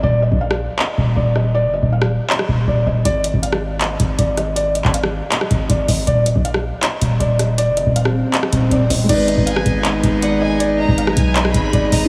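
The clip opens with a felt-muted upright piano, soft and intimate with thick felt, carrying the melody through a diffuse ambient delay. A punchy, up-front 808-style bass with a fast attack and decaying sine tone sits beneath it. This brooding, menacing trap excerpt moves at 159 BPM in 4/4 with a half-time feel, and an electronic trap kit joins at 0.5 s with metallic hi-hats, handclaps, rim clicks and a crash cymbal. An electronic swell sounds from 7.9 to 9.1 s, leading into a new passage where a dark baby grand piano with long sustain settles into the background. A reedy, full accordion holds sustained chords there, and a chamber violin section with a gut-string tone and smooth top adds a bowed second line from 9.5 s. The whole mix is dreamy and soaked in a huge ambient reverb, though a small room ambience still clings to it.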